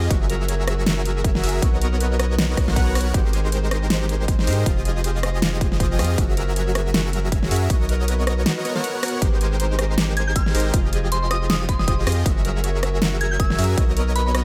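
Bright and euphoric, this future bass passage rides a swung half-time groove as huge, lush detuned supersaw chords and a deep, saturated sub bass pump under sidechain compression, with delay trailing the chords through a Gb7, Bmaj7, Abmaj7, Fm7 cycle. A punchy layered electronic kick and a big-room kit of hi-hat, rim click and a massive snare sit in small room ambience, while a fingerpicked concert harp rings softly in the background with its own delay and pumping. At 10.2 seconds a gentle, pure FM synth bell enters with the melody, its chorus and delay adding a mellow shimmer high above.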